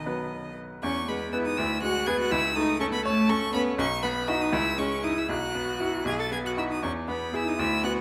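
A close, detailed recording sets this spirited classical-period movement for piano trio on a moderately reverberant scoring stage, moving at 80 BPM in 6/8 with a rubato feel in E major, tuned slightly low. The violin carries the melody up front with smooth, even vibrato, the cello shapes a second line beneath it, and a brilliant, polished baby grand with short sustain supplies the accompaniment. The harmony travels from B through E, A/C# and C#m to a Bsus4 that settles on B before arriving home on E at 6.8 seconds, in a lively passage cut from a longer piece.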